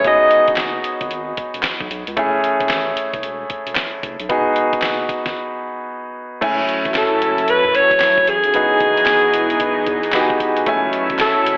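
Bouncy and punchy, this new jack swing R&B cut rides a swung groove from a gritty sampler-style kit with a thumpy kick, fat snare, handclaps, hi-hat and crash, over a deep, round analog bass sitting in the background. An intimate grand piano, close enough to catch its action noise, carries the chords up front, while a breathy alto saxophone with tape echo plays a brief phrase at the start and returns at 7.0 seconds with scooped, jazz-style subtone lines. After a break at 5.4 seconds, a lush, detuned unison pad with chorus enters at 6.4 seconds, and the dreamy mix is soaked in plate reverb with a telephone-like tint.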